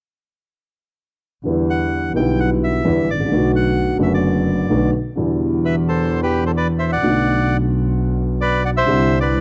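Sultry and tense, this tango moves at 130 BPM in 4/4 with a rubato feel, set in E minor. A dark, woody upright piano sits up front as accompaniment from 1.4 seconds, with a long, mellow sustain, joined at 1.5 seconds by a single bowed double bass that is rich and focused, with vibrato, yet placed at a distance. The bandoneon carries the melody from 1.7 seconds, its reedy, bright tone close-miked, full and forward in the mix. The harmony circles between Em7 and Bm7 before arriving on Cadd9 near the end of the second section. The whole has the sound of a dry, close 1970s-style studio recording, and the passage is cut from a longer piece.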